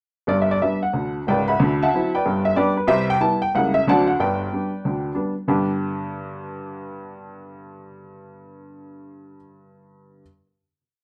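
A lone upright piano opens at 0.3 seconds with an exuberant, playful stride figure in G major, swinging its eighth notes at a brisk 186 BPM in 4/4. The instrument sounds woody and worn, slightly detuned and pitched to A4 = 436 Hz, and it sits up front in the mix, carrying the tune over its own chords and a bounding stride bass that reaches down to C#1. The short opening passage moves from G through D9, back to G, then to Cmaj7, a passing C#dim7 and D7 before landing home on G. From 5.5 seconds the piece settles onto a closing chord, and the piano is heard until 10.2 seconds. Light reverb and a dark, warm production frame this complete miniature.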